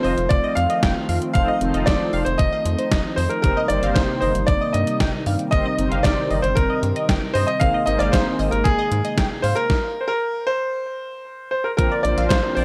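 An up-front, overdriven 80s digital drum machine with a thumpy kick and gated-reverb snare drives this melancholic, nocturnal synth-pop excerpt in C minor at 115 BPM, where a clear, polished concert grand piano carries the melody through analog delay over a punchy, funky polysynth comp, a bold, evolving brassy analog pad, a rubbery, bouncy square-wave bass and a mellow, round synth brass that drops out at 8.5 s and returns at 11.8 s, all captured in a dry, gritty hardware recording as the chords move from F7 through Cm7/G and Abadd9 to Bbadd9.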